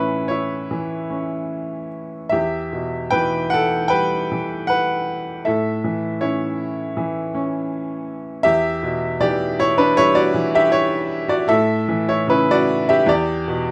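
The pulse moves in an unhurried 4/4 at around 78 BPM, its beats stretched and pulled with a free rubato that gives the phrasing a speaking, uneven quality. This is a lyrical classical piece for solo upright piano in E dorian, and its mood is wistful and melancholic. The piano carries everything alone for the full 13.7 seconds, reaching from E2 up to G5, with a bright, woody, vintage tone placed up front. The harmony rocks gently between A and E minor, settling onto an Em7 at 13.1 seconds, a back-and-forth that deepens the sense of longing. A moderate small-room ambience surrounds the instrument, and the recording is a short section taken from a longer work.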